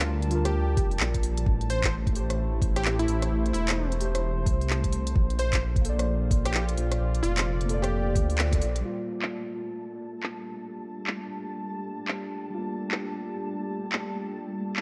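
A deep, rumbling detuned saw bass sits up front in this wistful, melancholic future garage excerpt at 130 BPM in G dorian, pumping under a warbling, nostalgic tape-like pad, muted felt-like synth keys with chorus and tape echo, and a punchy, catchy unison lead carrying the melody. A knocking electronic kick and an overdriven kit of handclaps, smooth filtered hats and rim clicks drive a swung groove through Gm7, Am7 and Bbmaj7, with a band accent at 8.4 seconds. The bass stops at 8.8 seconds, and a flickering, grainy reverberant texture enters at 9.1 seconds over the keys, pad and drums, all in a dark, warm production with light reverb and digital ambience.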